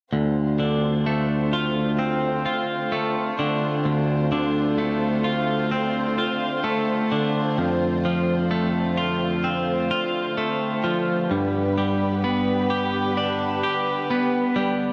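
A bright, twangy twelve-string electric guitar sits up front, playing clean, picked arpeggios through spring reverb, analog delay and slapback echo, its compressed tone ringing across the whole of this slow rock excerpt. Beneath it, a dark studio string section holds sustained chords with light vibrato and a soft, woody bowed attack, set lower in the mix. At 64 BPM in straight 4/4 and D dorian, the harmony moves from Dm7 to F6 at 7.6 seconds and on to G at 11.3 seconds. A lush hall reverb gives the recording a big arena sound. The mood is melancholic yet cathartic, with the bright guitar lines floating over the somber string bed.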